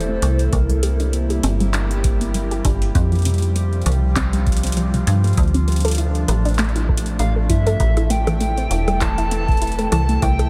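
Up front and metallic, a digital FM bass with a fast, decaying attack and tube saturation anchors this cerebral, melancholic IDM fragment, cut from a longer piece. Beneath it, a warbling, tape-like pad holds sustained chords through chorus, phaser and its own reverb, mellow and nostalgic with a slow attack and long release, moving from Am through C7, Fsus2 and Dm7 before returning to Am. A dusty, lo-fi pluck sits in the background, spinning evolving arpeggios with a noise layer and diffuse ambient delay, while a filter sweep runs across the arpeggiated sound for the whole passage. The lead, a detuned blend of square, sawtooth and triangle waves with a sub octave and vibrato, is heard briefly at the start and returns at 7.2 seconds, its tone carrying lush chorus, cassette-tape grit and tape echo. The rhythm comes from an analog drum machine with bongos, handclaps and metallic hi-hats lightly swung and washed in ambient delay, joined at 0.5 seconds by a deep, tape-warmed electronic kick, all set in a light reverb.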